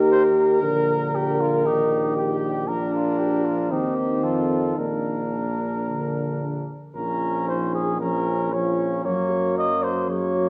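Classical brass quintet music, heard as an excerpt from a longer piece, with a stately, warm mood in a steady, straight four. A mellow cornet carries the melody up front with light vibrato, though its tone sits distant and roomy, while a trumpet of similar soft character plays a second line beneath it. A French horn and a trombone fill in the accompaniment, the horn mellow and set back in the hall, the trombone with a rounded, gently vibrating tone. A clear tuba with a vintage colour anchors the bass. At 7.0 seconds the harmony darkens into the minor, moving to a Gb chord at 9.1 seconds, all of it bathed in a moderate concert-hall reverb.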